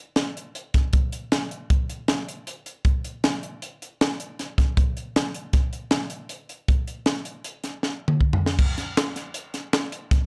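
Intricate and wistful, this short rock excerpt cut from a longer piece moves at 157 BPM in an odd 5/4 metre with a straight feel. A crisp fusion drum kit carries the passage from 0.2 seconds to 10.2 seconds, using crash cymbal, hi-hat, kick drum, snare drum and toms. The kit sounds acoustic and polished, set up front in an airy studio room, with a high-tuned snare and a tight kick. A drum fill from 7.8 to 8.6 seconds marks the turn into a new section that runs to the end. Light reverb and a dark, warm production round out the recording.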